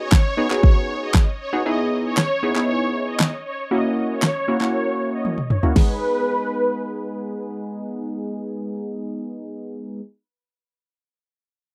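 A punchy, up-front electronic pop drum kit drives this driving, energetic dance-pop excerpt, its layered kick and fat snare sitting beside handclaps, toms and crash cymbal, with a drum fill at 5.2 seconds before the kit drops out at 5.9 seconds. A funky polysynth comp carries the accompaniment from start to finish, its detuned sawtooth tone warbling and vintage, with a fast-attack filter pluck, chorus and sidechain pumping. Above it, a lush supersaw pad sings the melody, bright and sustained, built from detuned unison sawtooth and triangle layers with a sub octave, a slow attack and a long release, treated with tape echo and its own sidechain pumping until it stops at 7.3 seconds. A filter sweep runs through the opening passage as the chords move from B6 through Emaj7 and F#7 before settling on G#m for the second passage. The sound is a dry, close 1970s-style studio recording with light reverb, the drums re-recorded in a small room.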